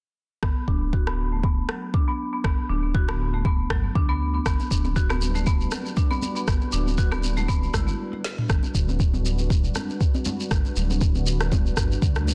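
A deep, up-front electronic kick drives this short afro house cut at 119 BPM, joined by a rumbling detuned saw bass with sidechain pumping, a produced kit with a woody snare, and woody hard-mallet marimba arpeggios, both bass and marimba carrying filter sweeps until the marimba drops out at 7.8 seconds; grainy shekere, high-tuned congas and a moody, chorused analog pad on Gmaj7 arrive between 4.5 and 4.7 seconds, and a brief break at 8.0 seconds with a drum fill leads into a driving, dry and densely limited final stretch.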